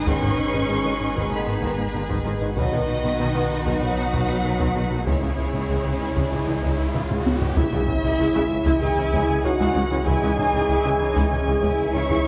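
The recording has a worn, warbling cassette-tape quality, with drifting pitch, set in a moderate scoring-stage reverb. This brooding, relentless fragment of a hybrid orchestral and electronic film score moves at 96 BPM in 4/4 in C# minor, its chords passing from G#m to B and then to C#m at 5.1 seconds. Lush bowed violins with vibrato carry a focused melody over a second, more distant violin line, while violas and cellos sit in the background and a very quiet double bass section adds to the low end. A mellow French horn section holds sustained chords above a very quiet, clear trombone section. Underneath, a fat, detuned sawtooth analog bass plays a riff alongside a deep sub bass and a shimmering, chorused pulse-width pad with a retro tint. A very quiet taiko ensemble struck with heavy sticks drives the rhythm, and an electronic riser climbs from 5.1 seconds through a drum fill into an impact at 7.6 seconds that opens the next section.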